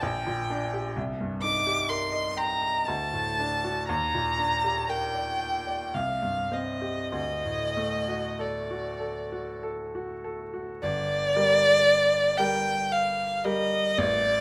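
Flowing in a rubato triple metre, this solemn, yearning romantic classical duo sets a rich, expressive bowed violin melody, colored with vibrato and portamento, over a bright, brilliant baby grand piano accompaniment, both placed up front in close, detailed sound with moderate recital-hall reverb, in a short excerpt cut from a longer piece.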